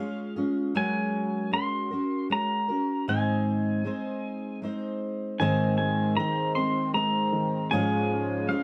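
Gentle and nostalgic, this excerpt of acoustic folk in Ab mixolydian moves in an unhurried 3/4 at 78 BPM, where a clean, compressed pedal steel guitar sings the high melody up front with slide and volume swells over a full-bodied, shimmering, octave-doubled fingerpicked twelve-string, until at 5.4 seconds a dark, reedy musette accordion adds sustained chords in the background and a soft, felt-muted upright piano with audible action noise brings intimate arpeggios, all in a moderate studio reverb.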